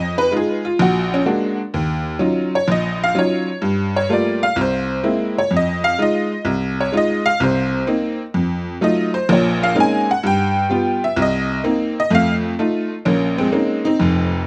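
A jangly, metallic tack piano sits up front with a slapback echo, playing a late-night, swinging solo jazz piece in Bb minor at 127 BPM with a honky-tonk solo from 0.0 to 13.1 seconds over rich extended chords, all in a dry open-air sound in this short cut from a longer piece.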